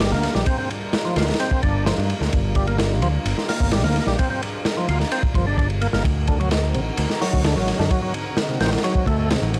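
Breakbeat excerpt with a funky, energetic drive, built on a crunchy, saturated drum kit with a tight kick, dark cymbals and a rolled-off top that sits up front. A picked electric bass anchors the groove while an overdriven tonewheel organ with key click and chorus vibrato plays a thick riff through a filter sweep and analog delay. Behind them, a lush, detuned unison pad holds sustained chords with chorus, phaser and sidechain pumping, all set in a dry, gritty hardware sound with vinyl crackle and light reverb.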